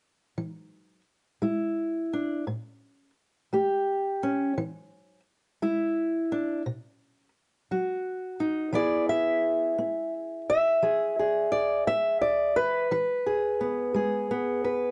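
A lone fingerpicked acoustic guitar opens at 0.4 seconds, its old ladder-braced body giving a dark, woody, boxy tone with the dull edge of aged strings. This is a soulful, laid-back acoustic country blues in 12/8 at 58 beats per minute, felt in unhurried dotted-quarter pulses with a straight feel. The first passage sits in E mixolydian, moving through E7, A7, back to E7 and then B. At 8.7 seconds the harmony settles onto a plain E major chord for the second section. The guitar sits up front in a small amount of reverb, and the top end is soft and rounded. It plays alone for the whole fragment, which is cut from a longer piece and stops at 14.9 seconds.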